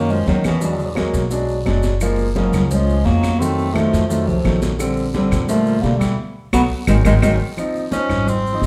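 A breathy, mellow bass clarinet carries the melody from the first moment of this lively, danceable Afro-Cuban jazz excerpt at 172 BPM. It is joined at once by a punchy tenor saxophone with scooped notes on a second line, a polished grand piano with long sustain, and a woody pizzicato upright bass up front. Within the first half second, bright high-tuned congas, grainy maracas and claves settle into the background, while a raspy guiro sits close and dry. After a band accent from 6.2 seconds, the bass clarinet drops out and the forceful tenor saxophone takes a short solo from 7.6 seconds over a Dbmaj7 chord, all set in a moderate large-studio reverb that captures a band playing live together.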